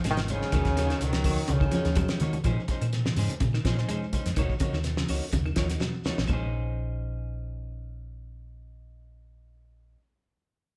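Hypnotic and driving, this afrobeat excerpt puts a cloth-damped, thuddy drum kit with a fat snare up front beside a dark, round hollow-body bass, while congas sit in the background and woody claves and a grainy shekere stay very quiet, a slightly broken-up electric guitar plays arpeggios and a clean semi-hollow guitar adds stabs, and a mellow trombone carries a brief melody over a raspy tenor saxophone with analog delay and a warm baritone saxophone until 2.2 seconds, the band playing live together in one room with moderate studio reverb.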